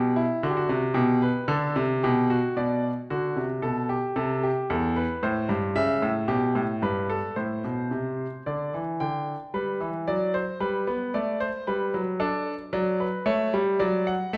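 A bright concert grand piano plays this baroque-style classical two-part invention alone, its brilliant upper register reaching G5 while a deep bass extends down to E2. The mood is driving yet contemplative, set in a straight three-beat metre. The piano sits up front and intimate, with audible action noise lending its polished tone a present quality. The opening material returns at 9.0 seconds after a middle passage that moves through Bm, C and Am before arriving at Dsus2, and dominant chords such as D7 and A7 recur throughout. A wet recital hall reverb surrounds the instrument, and the fragment breaks off after reaching D/F# at 13.8 seconds, as if cut from a longer piece.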